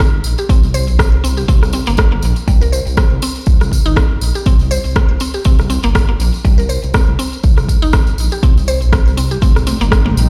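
Spiritual and hypnotic, this short afro house cut from a longer piece moves at 121 BPM in C minor with a light 16th-note swing, resting on a single Cm7 chord. An up-front, layered electronic kick anchors a dark, detuned, rumbling saw bass that pumps with sidechain compression, as do woody, round mallet-like synth pluck arpeggios carrying chorus and delay, while a produced deep house kit adds rim clicks and toms alongside a jingly acoustic tambourine. Near the close, faint, distant high-tuned congas arrive at 9.4 seconds and an ethereal, airy pad with ensemble chorus, phaser and built-in reverb drifts in behind at 9.7 seconds.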